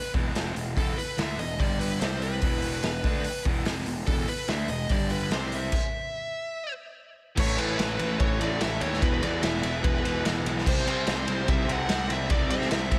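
A dark, high-gain lead guitar opens this menacing, driving hard rock cut in E minor at 146 BPM, quickly joined by a double-tracked overdriven guitar riff with slapback echo, a bright, growly fuzz bass and a gritty, up-front garage drum kit with punchy kick and dark cymbals in a pumping small room, all halting for a stop at 5.7 seconds before coming back in at 7.4 seconds, where a very quiet, crunchy second guitar adds its own riff under light reverb.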